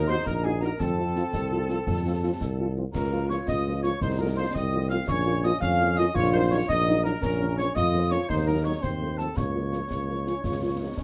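A straight 6/8 pulse at 112 beats per minute, counted in dotted quarters, drives this martial, resolute march for wind band in Bb minor, cut from a longer piece. A dark, distant trumpet section carries the melody. A clear euphonium, a woodwind section with vibrato and a smooth top, and an airy, hollow wooden piccolo with a soft attack each add a second line around it. An up-front tuba anchors the bass with light vibrato, while a mellow French horn section supplies accompaniment in the background. Concert snare drum, concert bass drum and clash cymbals with a dark cymbal colour come in at 0.3 seconds. The sound is close and detailed with light reverb, and the harmony moves from Ebm through F and F7/C toward Bbm/Db by 9.4 seconds.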